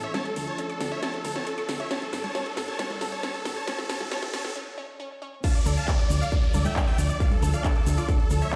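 A huge, detuned supersaw lead carries the melody of this euphoric, driving uplifting trance clip, its bright sawtooth tone compressed and pumping against the sidechain, with digital delay trailing its notes. Beneath it, a punchy FM bass with a round, dark edge holds the low end, while a lush, warbling unison pad sustains chords and an analog pluck runs arpeggios with a moving filter sweep, both set in the background under chorus. A techno drum kit of cracking snare, metallic hats, handclaps, congas and crash cymbal plays a fill through the build-up as a background riser and downlifter enters at 1.2 seconds, and the harmony moves from D minor through G minor to A. After a short break, the drop lands at 5.4 seconds, where a distorted, layered electronic kick comes up front, joined by a very quiet supersaw stab on a second line and a grainy, distant egg shaker. The whole piece sits in a large studio reverb, heard as if played on a big sound system in a bare room.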